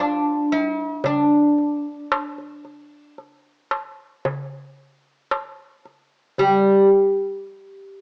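An Arabic maqam ensemble piece in 10/8, soulful and hypnotic and cut from a longer performance, opens with a woody, fretless, double-strung oud plucked with a plectrum, sitting deep and up front with a cassette-tape coloring, joined at 1.0 s by a crisp, close metal-shell darbuka, heard through moderate spring reverb and small-room ambience with the small-speaker character of a home cassette recording.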